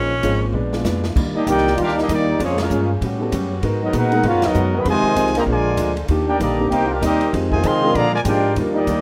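Up front with light vibrato, the trumpet section carries the melody of this joyful big band swing excerpt from 1.4 s, over a punchy, close-miked bright trombone section on a second line, a distant, roomy trombone section holding very quiet sustained chords, a woody, thumpy pizzicato upright bass, a clear, boxy upright piano and a dark, clean hollow-body electric guitar as background accompaniment, and an airy, polished drum kit with a fill ending at 1.2 s and a band accent at 2.5 s, set in wet studio reverb with the faint mains hum of a rough home demo mix.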